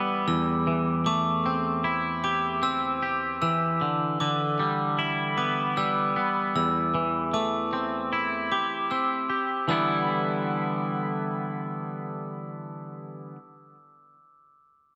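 Melancholic and brooding, this rock fragment pairs a twangy, clean electric guitar playing picked arpeggios up front, thickened by chorus, delay and slapback echo, with a glockenspiel struck by hard plastic mallets that adds bright, sparkling, bell-like arpeggios through analog delay. The harmony sways between Am7/E and Em7 inside a big arena sound bathed in lush concert-hall reverb. The glockenspiel drops out at 10.1 seconds, leaving the guitar alone until 13.4 seconds.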